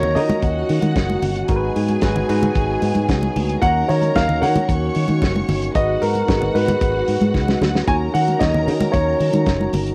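A dark baby grand piano with audible action noise carries the melody over lush, bowed strings, a barky phased tine electric piano, mellow background French horns, a round foam-muted fingered bass and bright, damped congas, while a muffled, dry soul drum kit joins at 0.2 seconds and plays a fill at 7.3 seconds in this glamorous, danceable disco excerpt with a lo-fi cassette character and light reverb.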